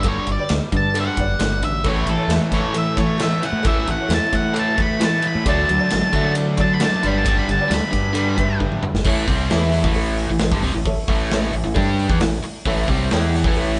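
An up-front, dark octave-fuzz lead guitar tears through a solo from the start until 8.6 s, riding over a confident, driving classic rock groove in A mixolydian at 133 BPM, where a double-tracked overdriven electric guitar riff, a growling fingered bass with overdrive and a big rock drum kit with a punchy kick power a G, A, D, G progression. A second, biting overdriven guitar joins the riff at 1.9 s, while a jangly, boxy tack piano sits in the background and a very quiet, close and dry cowbell adds metallic color. A drum fill at 8.6 s leads into a new section on A at 9.1 s, all captured as a band playing live in a stone room with moderate reverb.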